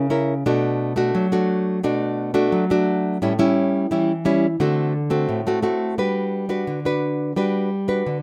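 This is a rough home demo with moderate studio reverb, giving the close, up-front guitar a modest sense of room. It is a short fragment of a lively, playful samba in a straight 4/4, cut from a longer piece. A lone nylon-string guitar carries everything, fingerpicked with a bright, small acoustic tone that spans A2 to B4. The harmony moves from Bm7 to A7 and then D7 across the first part of the fragment. A new section begins at 6.0 s on a Gmaj7, and the clip runs out at 8.2 s.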